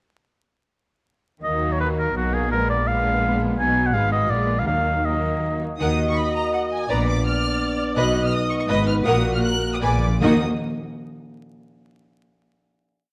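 Restless and urgent, this dramatic romantic orchestral piece in Eb minor races along at 150-172 BPM in a rubato 3/4, with a lush, vibrato-rich violin section carrying the melody, a second violin section adding short accented and sustained chords, a smooth viola section weaving a counter-melody, a background cello section and an expressive double bass section anchoring the bass, and a clear, close-miked solo oboe standing up front until 5.6 seconds, before a dark, distant French horn section enters with sustained chords at 5.8 seconds, the music slows, and close, dry timpani roll in at 9.8 seconds toward a final Ebm chord, all set in a moderate scoring-stage reverb over a vinyl crackle.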